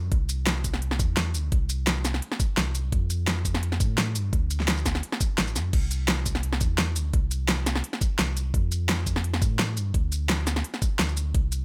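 A deep, sine-toned sub bass with an added octave opens this dreamy liquid drum and bass clip at 171 BPM in C major, its fast attack and sustained, mellow notes colored by tube saturation across a range of A1 to A2. From 0.1 seconds a knocking electronic kick and a layered pop drum kit sit up front in studio reverb, the kit bringing a fat snare, crisp hi-hats, shaker and crash cymbal over a lightly swung 16th-note feel. The mix is close and dry overall, giving the groove a full, warm low end beneath the polished, produced drums.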